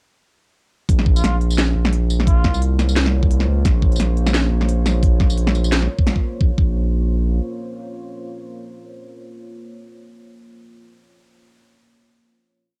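This spacious, dark half-time drum and bass piece in Bb minor at 174 BPM opens its drop at 0.9 s. A knocking electronic kick and a sparse kit of cracking snare, crisp hats and tambourine arrive up front with a small-room, cassette-tape grit, joined by a thick, tube-saturated sub bass playing chopped phrases. A soft, veiled cup-muted trumpet offers short classical-style phrases with light vibrato and tape echo, and from 2.6 s a moody sawtooth pad with detuned unison, chorus, reverb and sidechain pumping fills out sustained chords. After a band accent, the beat falls away, and the pad carries a long final chord from 6.4 s as the sub bass lingers briefly beneath it.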